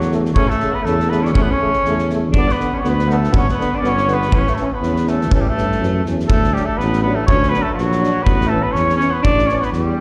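A mellow, soft-attacked tuba sits up front, carrying the bass with light vibrato in this festive, virtuosic Balkan brass band excerpt at 122 BPM in 2/4, swung on the sixteenths and set in A mixolydian. A clear flugelhorn with a vintage tone and gentle vibrato takes the melody, while a bright, smooth-topped alto saxophone plays a second line beneath it. Further back, a French horn and a distant, roomy euphonium fill in the accompaniment, and these four horns carry plate reverb and slapback echo. A loose acoustic drum kit, with a punchy kick, a medium-tuned snare, a rolled-off top and a pumping room sound, keeps time until 9.8 seconds. The harmony moves between A and G before shifting to D at 6.3 seconds, and the performance comes across as a live gig heard through the venue's PA, with moderate club reverb and a recital-hall ambience.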